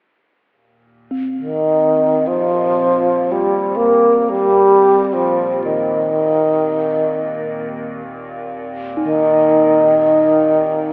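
In free time, this peaceful, spacious piece of meditative world music drifts along with an unmetered flow, cut from a longer work. A bronze singing bowl sounds first at 1.1 seconds: close-miked and dry, its full metallic ring carries a slow beating, struck with a suede striker. At 1.2 seconds a detuned, morphing wavetable pad settles in as a low drone, its triangle-shaped unison voices arriving with a slow attack and long release, colored by a phaser and its own built-in reverb. The bass flute takes the melody from 1.4 seconds, sitting up front with an airy, straight tone, soft attack and lifted highs, expressive in its phrasing and trailed by an analog delay. A lush hall reverb soaks the dreamy mix, while a telephone-like quality colors the overall sound.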